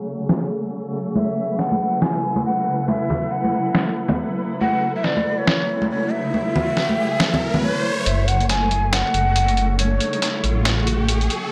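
A breathy, end-blown ney carries the melody from 1.2 s, its vibrato and crisp attack softened by a low-pass filter and dub echo. It floats over a cloudy granular pad sustaining chords in F# minor and a bright, flickering grainy texture that runs throughout this meditative, heavy deep dubstep excerpt at 139 BPM in a swung half-time feel. A compressed, pitched-down trip hop drum kit sits up front with hi-hat and snare, joined by ringing, high-tuned vintage congas until 7.6 s, while an electronic riser and a filter sweep build tension. At 8.1 s a dark, rumbling detuned saw bass enters up front, adding deep beating weight as the build-up begins, all set in a gritty hardware sound with moderate spring reverb.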